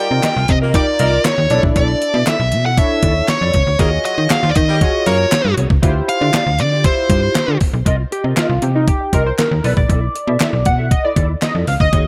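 Slick and late-night, this early-eighties boogie funk excerpt moves at 118 BPM in a straight 4/4, cut from a longer piece. Up front, a nasal, overdriven lead guitar with a parked wah carries the melody until 7.6 seconds, while a punchy horn section with light vibrato and octave doubling plays a second line until 5.3 seconds. A glossy, chorused polysynth built on detuned pulse and sawtooth tones with filter sweeps supplies dark, sustained accompaniment throughout, and a clean, fingered electric guitar with ensemble chorus plays a riff in the background. The bottom end comes from a snappy FM bass with a metallic attack, set up front beside a detuned 8-bit drum machine whose thumpy kick and fat snare are overdriven and given gated reverb, with a very quiet, hollow group handclap sitting behind. At 7.9 seconds the piece moves into a new section where an analog polysynth takes a solo, as the minor eleventh and seventh chords continue to shift beneath a digital ambience.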